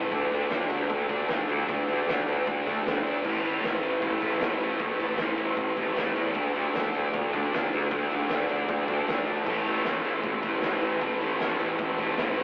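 A rough, telephone-filtered rehearsal-room recording with light reverb and warm saturation carries this rowdy, raw garage rock excerpt at 154 BPM in straight 4/4, where a thick, double-tracked fuzz guitar riffs up front over D5 and A5 chords, a growly overdriven picked bass sits in the background, and an oversized low-tuned acoustic drum kit enters at 0.1 seconds with a fat snare, punchy kick, dark crash and ride cymbals and a gritty, pumping stone-room sound.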